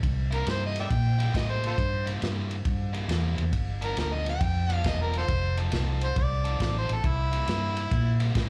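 Heard as a live club gig through the venue's PA with roomy reverb, this gritty, soulful electric blues shuffle features an amplified, overdriven harmonica soloing with tongue slaps, scooped notes and light vibrato over a biting, picked overdriven guitar riff, both carrying slapback echo, while a dark, round, foam-muted fingered bass and a muffled, lo-fi vintage drum kit of tight kick, snare and ride sit up front as the chords move from C7 to G7, F7 and back to C7.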